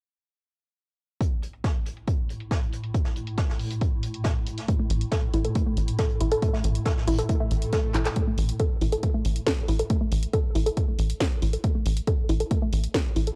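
Dark and hypnotic, this driving peak-time techno cut moves at 138 BPM in a straight 4/4, tuned slightly under standard pitch and taken from a longer piece. A heavy, layered electronic kick sits up front from 1.2 seconds, joined by a techno kit of handclaps, pumping low-passed hats and a cracking snare re-recorded in a large room, while a natural brushed jazz kit with a medium-tuned snare, high-passed and small-roomed, runs beneath them until 8.2 seconds under a filter sweep. In the background a swarming, detuned granular drone on A2 breathes with slow attack and built-in reverb, and from about 4.9 seconds a tight, punchy sawtooth-and-square sequencer bass on A1 drives forward, mellow yet up front. A woody, percussive wave-folded pluck riff between A3 and A4 carries a moving notch, chorus, tape echo and 12-bit sampler grit, pumping against the kick along with the bass and drone. A faint electronic swell and a drum fill at 7.9 seconds mark the turn into the second section, where the drone and brushes drop away, all set in a gritty hardware sound with cassette tape character and digital ambience.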